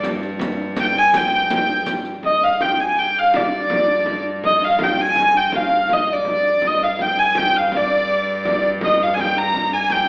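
Driving and mysterious, this medieval dance in 6/8 moves at 110 dotted-quarter beats per minute, cut from a longer piece. A dark, woody hurdy-gurdy sits up front carrying the melody with a slapback echo, over a clear, floating viola da gamba drone on G2 with light vibrato, a deep frame drum struck with hard hands, and a riq whose bright jingles stay in the background until 2.1 s. A reverberant recital hall surrounds the ensemble, filtered through a thin AM-radio tone, as the opening passage gives way to a new section at 2.2 s.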